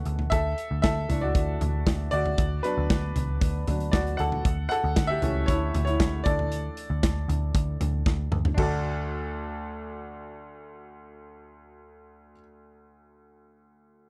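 A straight 4/4 pulse drives this short piano-driven pop excerpt, and its mood is warm and uplifting. A clear upright piano carries a solo through the opening stretch, its woody, intimate tone up front and polished, with the action noise audible as it ranges from deep bass notes into the upper register. Beneath it, a vintage muted picked electric bass sounds dark, round and punchy through its amped, foam-muted tone. An acoustic modern drum kit in a small room sits close to the listener, with a tight kick, a medium-tuned snare, hi-hat, toms and crash cymbal. The harmony moves through Dsus2, Bm and Dmaj9, and a drum fill at 8.1 seconds leads into a new section that settles on D at 8.6 seconds, just before the drums stop. The dry, close sound recalls a 1970s studio, and the piano rings on until 14.1 seconds, after the bass has finished.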